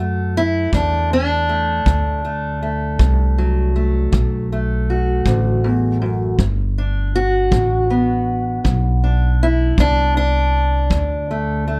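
A dark, boxy parlour steel-string acoustic guitar, fingerpicked and up front, carries the melody in this swaggering, laid-back acoustic country blues cut from a longer piece, moving in a slow 12/8 at 53 BPM in D mixolydian. Beneath it a woody, thumpy pizzicato upright bass with steel strings holds the low end, while a punchy, natural kick drum played with brushes enters at 0.7 seconds. The sound is close and detailed with little reverb, as the harmony moves from D to G at 6.4 seconds before landing on D5 at 10.9 seconds.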